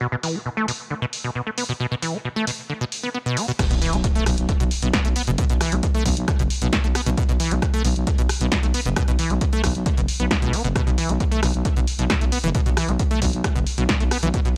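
A squelchy, resonant sawtooth acid bass riff opens this driving, intense peak-time techno excerpt in B minor at 134 BPM, joined almost at once by a punchy analog drum machine whose filtered hats and cymbals pump under sidechain alongside rim clicks and a filtered snare, with the acid line carrying chorus and tape echo. At 3.6 seconds the drop lands on a B5 chord as a dry electronic kick enters with a background impact effect, and a growling, thick FM bass sits up front with its own sidechain pumping. The sound is gritty and dry, like a hardware recording in a digital ambience.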